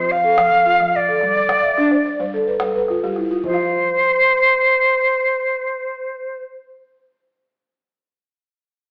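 An airy, reedy concert flute with vibrato carries the tongued melody up front in this hypnotic West African string and xylophone piece at 108 BPM, over buzzing, woody balafon arpeggios played with soft rubber mallets, which add a fill from 1.4 to 3.4 seconds, and a deep, close calabash, the live band set in a large studio reverb with an AM radio sound as the harmony moves from F to G in this short cut from a longer piece.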